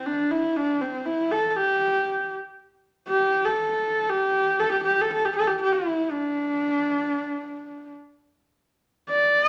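The rhythm moves in a straight, even four-beat pulse, giving this short Mongolian traditional fragment a galloping drive and a sense of vast open space. A single horsehead fiddle plays solo throughout, from 0.0 to 9.5 seconds, its bowed horsehair strings producing a husky, rich tone with an airy quality to the bow. The playing has a soft attack, light vibrato and gliding portamento. The player sounds intimate and up front, as if sitting close to the listener, while a wet studio reverb adds a sense of surrounding room. The line stays within a modest range, with a new section beginning at 2.6 seconds and running until the fragment ends, tuned slightly below modern concert pitch at A4 = 435 Hz.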